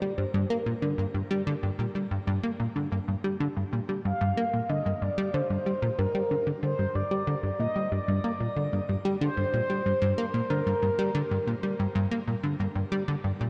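A mellow, round, horn-like synth lead with vibrato and soft attack sings a sustained melody over a punchy, funky analog bass riff from the start of this hypnotic, cosmic excerpt of sequencer-driven space music at 93 BPM in G minor, the lead drifting through chorus, shimmer reverb and delay until 11.5 seconds while the up-front, filter-plucked bass continues alone to 13.5 seconds in a dark production bathed in a long plate reverb.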